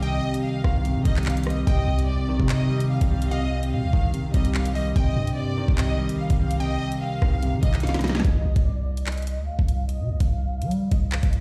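Dark and menacing, this half-time drill excerpt at 146 BPM sits in C minor over a Cm chord, led by a close, lush violin section with vibrato, softened by a low-pass filter and tape echo, while a glassy, detuned wavetable pluck adds a crystalline second line in the background. A clean, hollow-body electric guitar and a warbling, lo-fi tape-like pad hold the low accompaniment and sustained chords until 8.2 s, as a deep, sine-toned 808 bass and an overdriven drill kit with knocking kick, woody snare, bright hats, handclaps and rim clicks sit up front. A drum fill at 7.8 s leads into a filter sweep from 8.2 s, all inside a big, bare-room digital ambience with large studio reverb.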